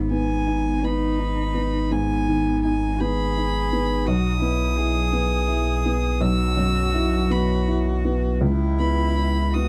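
Neoclassical piano and strings in a rubato 6/8 at 55 BPM, this fragile, melancholic fragment of a longer piece moves from G#m through Bsus4 to C#m7 over 9.7 seconds. A felt-muted upright piano, mellow and dark, sits up front as accompaniment over a round sine sub bass. From 0.1 s a single violin, bowed sul tasto, carries a floating, distant melody, while one cello adds an intimate second line with light vibrato, all captured in a dry, close 1970s-style studio sound.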